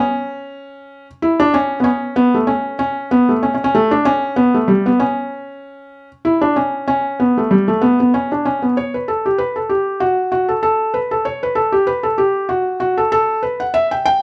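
A felt-muted upright piano opens alone and carries this short Celtic folk piece by itself from 0.0 to 14.2 seconds, sitting between G3 and G5. The mood is spirited and driving, set at a brisk 192 BPM in 4/4 with a light swing on the eighth notes. The felt softens the piano into a mellow, intimate tone, placed up front so the noise of its action comes through audibly. A studio reverb lends the piano a roomy halo, suggesting a band playing live in one space. The tune moves through two sections, shifting to new material at 8.8 seconds, and the recording is cut from a longer piece.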